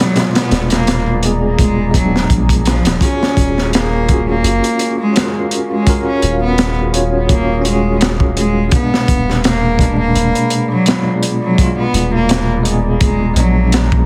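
A heavily compressed, radio-like sound with light studio reverb frames this brooding, smoky trip hop excerpt in Eb minor at 84 BPM, gently swung, moving between Bb7b9/Eb and Ebm11. A reedy, gut-string cello carries the melody with dub echo up front, while a bell-like tine electric piano with tremolo and tape echo accompanies and a deep, dark pad with chorus and 12-bit sampler grit holds sustained chords in the background. A crunchy, saturated breakbeat kit with a high-tuned snare and tight kick drives from the start, and a round, soft dub sub bass with tube saturation joins at 0.5 seconds.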